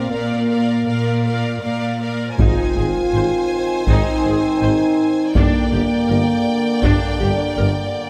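A mellow French horn section holds sustained chords over clear and lush violin sections, an intense viola accompaniment and a focused cello bass in this relentless, heroic fragment of an epic orchestral film score, joined at 2.4 s by background trombones with a vintage tone, bowed double basses, a distant tuba, hard-stick taiko drums and a huge, bright impact, all carried by a moderate scoring-stage reverb.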